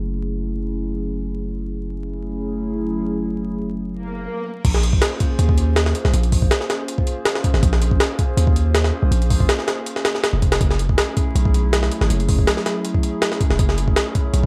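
A gritty, pitched-up jungle drum kit with a thumpy kick and high-tuned snare bursts in at 4.6 seconds, sitting up front and compressed, with crash, hi-hat and the sound of a large room around it. Before that, this nostalgic, dark drum and bass cut at 161 BPM in Bb minor opens on a warbling, lo-fi, detuned pad with chorus, holding ninth chords over a deep, mellow sine 808 bass, and a brief electronic swell at 4.0 seconds leads into the drop. Vinyl crackle and light digital ambience run underneath the whole fragment.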